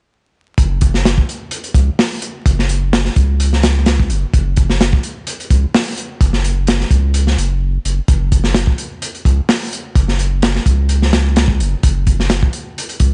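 A dry, crackling recording with a dulled top end carries this funky, raw breakbeat excerpt at 128 BPM with a slight swing, where a gritty, up-front acoustic drum kit with a tight kick, medium-tuned snare and hi-hat plays alongside a deep, thick, saturated sub bass from 0.6 to 13.1 seconds.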